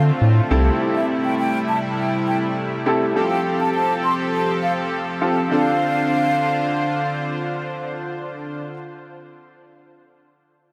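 A straight 4/4 pulse at 102 BPM drives this confident pop passage in D minor, cut from a longer piece, where a smooth, detuned supersaw holds sustained chords through a lush chorus and a round, dark analog bass sounds only until 0.7 s. A natural-toned baby grand piano adds accompaniment through analog chorus, and a breathy, hollow silver concert flute carries the melody with delay from 1.0 s to 7.2 s. The harmony moves from Dm7 through C6 and Fadd9 back to Dm7, all soaked in a huge ambient reverb for a dreamy mix.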